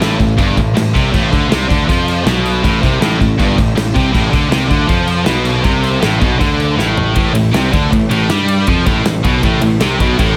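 Dark and epic, this heavy metal passage, cut from a longer piece, drives forward in a straight 4/4 over a single minor chord. Three distorted, high-gain electric guitars play a riff from the background: one heavy and double-tracked, the other two picked with a bright, scooped tone. Up front, a growly fuzz bass, overdriven and heard both direct and amped, holds down the low register. An acoustic studio drum kit with a punchy kick, medium-tuned snare, toms, crash and ride sits forward in a pumping room sound, and a drum fill at 6.8 seconds leads into a new section at 7.2 seconds. The mix is dry, with little reverb.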